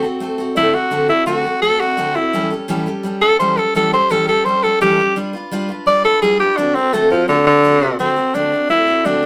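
Retro and rollicking, this rock excerpt in D mixolydian drives along at 170 BPM in a straight 4/4, with a picked steel-string acoustic guitar opening at 0.0 seconds, bright and full-bodied with fresh strings and a touch of finger squeak, over a D7, A7, G7 progression. A raspy tenor saxophone takes the melody from 0.6 seconds, sitting up front with a gritty edge, scooped notes, light vibrato and a smooth top, soloing in a pop style until 8.0 seconds before a short new section closes the cut. The sound is a rough rehearsal-room recording with tube saturation and moderate studio reverb.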